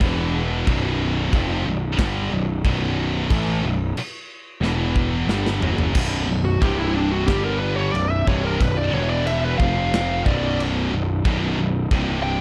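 This heavy metal excerpt opens with two bright, high-gain electric guitars picking a distorted riff, one of them in the background, over a growly, fuzz-laden picked bass that sits up front and an acoustic kit with a tight kick, medium-tuned snare, toms, and china and crash cymbals in a small room. After a drum fill at 4.6 seconds, a dark high-gain lead guitar enters at 6.4 seconds with a soloing melody over shifting power chords. The aggressive, heavy mix carries light reverb and a warm production.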